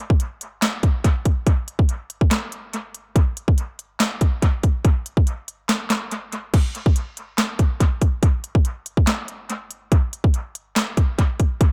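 Brooding and menacing, this hip hop fragment moves at 142 BPM in 4/4 with a half-time feel, carried entirely by an electronic trap drum kit that sits up front from 0.1 seconds: a hard-clipped kick, sharp snare, crisp hi-hats, handclaps and crash cymbal, all thrown into dub echo. The echo-heavy mix has light reverb and a faint mains hum underneath. Cut from a longer piece, it shifts into a new section at 6.5 seconds before ending at 11.7 seconds.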